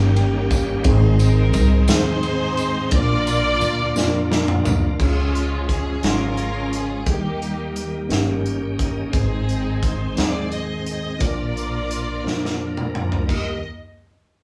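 Soulful and hopeful, this slow gospel passage in Eb major moves at 58 BPM in a straight 6/8, a short piece cut from a longer performance. A rich, lush string section carries the melody with bowed vibrato, sounding close and focused, while a mellow tine electric piano supplies clean accompaniment and slips in fills at the start and around 4.0 seconds. A bright, shouting tonewheel organ holds sustained chords behind them, lightly overdriven with chorus vibrato and a fast rotary speaker, and it steps forward with a fill near 8.1 seconds. Underneath, a woody, growly upright bass plays pizzicato, and an acoustic drum kit with bright cymbals and a punchy kick sits up front, adding fills leading into each new section. A jingly, compressed tambourine sits in the background until 5.0 seconds, and the whole band sounds as though it is playing together in one room with a moderate studio reverb.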